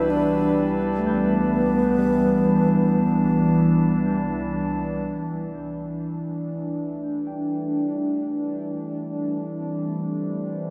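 Peaceful and luminous, this ambient fragment from a longer piece floats in free time beneath a vast cathedral reverb. A bright, reedy alto flute sings a close, straight-toned melody through a diffuse delay until 4.0 seconds, while a faint glassy, ethereal glass harmonica hovers high above until 5.1 seconds. Throughout, a warbling, nostalgic, detuned tape-like pad with chorus and phaser sits up front holding Cmaj7 before settling on C, and a very quiet, gritty, barky tine electric piano with tremolo traces arpeggios.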